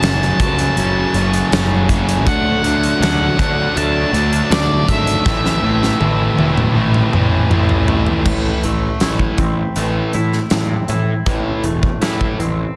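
A huge, up-front arena drum kit with a fat snare and punchy kick drives this brooding, dark quiet-loud alternative rock excerpt, rolling into a fill at 5.3 seconds while a growly, overdriven picked bass churns beneath. A dark octave-fuzz lead guitar carries the melody through plate reverb over a bright, compressed distorted riff guitar and a thick fuzz guitar sitting in the background, all moving through F#m, D and Am. At 8.2 seconds a clean, twangy guitar enters with lush chorus and plate reverb, playing arpeggios in a dense, heavily limited modern mix.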